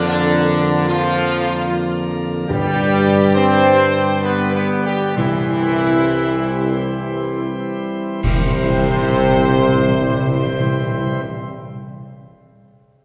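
This classical ceremonial fanfare, cut from a longer piece, moves in a stately triple metre with a regal, solemn bearing. A clear, close-miked trumpet section carries the melody with light vibrato, while a bright trombone section, a dark French horn section set distant in the background, and a pipe organ plenum of brilliant mixtures with baroque chiff hold sustained chords beneath it. A mellow tuba anchors the bass with light vibrato, and timpani struck with soft mallets on calf heads enter at 2.5 seconds with a round tone. The music slows gradually before a band accent arrives at 8.2 seconds, where clash cymbals and concert bass drum join briefly with a bright cymbal sheen. The ensemble sits in a church acoustic with a long, wet reverb that lends the brass and organ a grand, resonant spaciousness.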